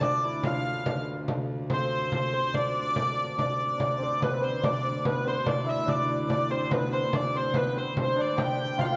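A straight triple-metre lilt drives this mysterious, ancient-sounding medieval dance, cut from a longer piece, with a small, bright frame drum keeping time. Up front, a nasal, earthy hurdy-gurdy carries the melody, while a ringing hammered dulcimer and a dark, smooth steel pan trace second lines in the background over a woody viola da gamba drone with light vibrato, and the music moves into a fresh section at 3.8 s. A recital hall's long reverb and worn, warbling cassette tape with drifting pitch give the recording a hazy, aged cast.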